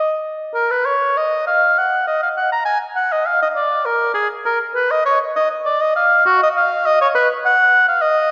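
A lone oboe opens this short passage cut from a longer work, a baroque-style classical fantasia in E-flat minor at 101 BPM in 3/4, played with a flowing, introspective rubato. The oboe sits up front with a warm, present tone and light vibrato, moving between Gb4 and Bb5 from 0.0 to 8.3 seconds. A wet concert hall reverb with a 2.5-second decay places the listener further back in the room.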